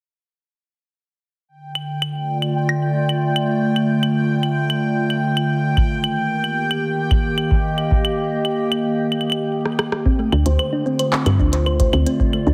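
A warbling, nostalgic tape-like pad opens this cerebral, melancholic IDM excerpt at 112 BPM, holding dark, lo-fi chords that move from D minor to E-flat and back, shimmer reverb trailing behind it as a bright, resonant stepped-filter texture bubbles high above. Clicky glitch percussion of claves, handclaps, hi-hat and rim click enters with digital delay, joined at 5.8 s by a deep, up-front analog kick that drops out briefly before a short fill. At 10.1 s a tine-like FM pluck begins arpeggiating, and a soft, woody FM bass settles underneath, all squeezed into a dense, heavily compressed radio sound within a moderate digital room.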